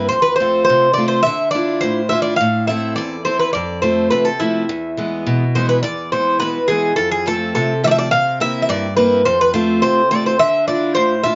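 A dark, moderately reverberant studio sound frames this short fragment of Greek folk music in a cool, bittersweet mood, moving at 105 BPM in a straight 2/4. Up front, a bright, metallic bouzouki carries the melody on its doubled strings, some of them octave-doubled, while a boxy parlour-style steel-string acoustic guitar, picked on fresh strings, plays the accompaniment beneath it. The same phrase is heard twice, with the second beginning at 5.8 seconds, as the harmony moves from F through Dmadd9, Am and E, and later through C7.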